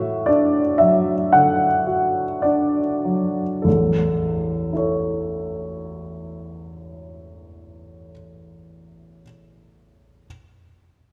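A wet concert-hall reverb with a 2.3-second decay surrounds this fragment of a romantic character piece for solo piano, lifted from a longer work. A warm baby grand sits present and up front, ranging from the deep bass up into the treble, its lyrical, warm phrasing shaped by a free rubato in 4/4. The opening slows over a D/A chord before settling on A at 3.7 seconds, and the piano sounds until 10.3 seconds.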